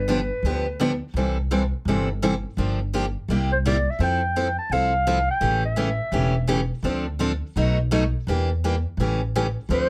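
Acoustic string swing in the jazz manouche style at a bittersweet, virtuosic 168 BPM, with a growly, thumpy pizzicato upright bass and a bright, fresh-stringed picked steel-string acoustic guitar with audible finger squeak carrying the changes under a breathy, subtone clarinet whose mellow, vintage solo phrases with light vibrato drift in and out from 0.0, 3.5 and 9.7 seconds, all held up front in a small, moderately ambient room.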